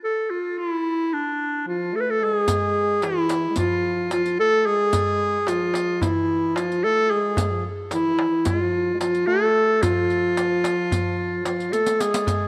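Set in a 9/8 at 221 eighth-note beats per minute, this Turkish makam ensemble excerpt carries a longing, soulful mood, opening with a clear, softly attacked clarinet melody that sits up front with a slapback echo, joined at 1.7 seconds by a dark, close-miked French horn second line with light vibrato. At 2.5 seconds the percussion enters: a crisp, deep metal-shell darbuka played with hard hands beside a dry riq with bright jingles and soft hands, with a drum fill near the end before the cut. A moderate plate reverb with a long tail lends the classical-style playing a spacious sheen.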